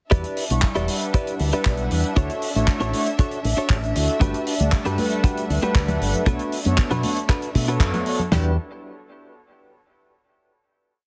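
A short, cosmic and sensual nu-disco piece rides a dry, damped 70s drum kit with a tight four-on-the-floor kick and a disco backbeat of closed and open hi-hat and handclaps, while a fingered electric bass, saturated and pumping through its envelope filter, plays a funky syncopated line beneath a clean, scooped electric guitar picking close-voiced funk chords through chorus and dub echo. Mellow, detuned sawtooth synth brass adds round, syncopated rootless stabs with a filter sweep, and a dark, sul tasto studio string section holds soft, pumping chords in the background. Congas join at 4.2 seconds, the band hits an accent at 7.8 seconds, and a final chord rings from 8.3 seconds, all set in a small room under a heavily compressed, radio-like sheen.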